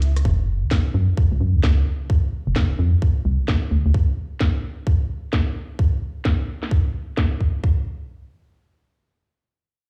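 UK garage in a two-step style, this late-night, soulful excerpt rides a swung groove, opening on a hollow, organ-like FM bass with a fast attack and dark decay that sits up front and drops away at 3.9 seconds. A tight, layered electronic kick pushes forward from 0.3 seconds, while a garage kit of filtered hats, rim clicks and a cracking snare plays quieter behind it from the very start until 7.3 seconds. The parts sound as if played back through a big sound system in a bare room, with a large studio reverb lending a cavernous digital ambience.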